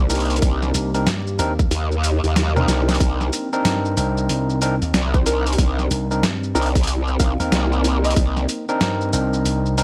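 A growling, wobbling bass sits up front in this gritty, playful glitch hop excerpt, holding low on a Cm9 chord in C minor at 93 BPM with a swung sixteenth-note feel, and it drops away at 8.5 seconds. Alongside it, a bright, punchy slap bass run through an envelope filter joins at 0.7 seconds, while a barky, overdriven tine electric piano stabs through a combo amp, its pumping sidechain and tape echo adding motion. The drums pair a compressed, pitched-down sampler-style kit of hi-hat, shaker, medium-tuned snare and toms, roughened with overdrive and studio reverb, with a tight, layered electronic kick that falls out between 1.7 and 3.0 seconds as a drum fill arrives. A very quiet, warbling, nostalgic pad sustains chords throughout, mellow and lo-fi, and at 5.1 seconds a woody, percussive wave-folded pluck enters in the background with a dark tone, chorus and tape echo. The whole has a dry, hardware-recorded grit with vinyl crackle across the mix.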